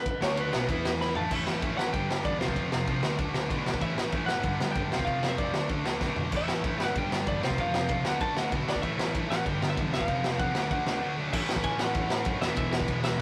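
Cut from a longer punk rock piece, this rowdy, rebellious stretch opens at 0.0 seconds with a compressed, slightly broken-up lead guitar melody, joined at once by an up-front garage drum kit with a boomy kick, gritty saturation and a pumping small-room sound, along with three picked distorted guitar riffs set back in the mix (one dark and sludgy, one bright and tight, one double-tracked and high-gain) and a very quiet, growly fuzz bass, as the band churns through an A, G, F, D cycle with drum fills at 1.0 and 6.0 seconds before landing on A and E in a rough, lightly reverberant rehearsal-room recording.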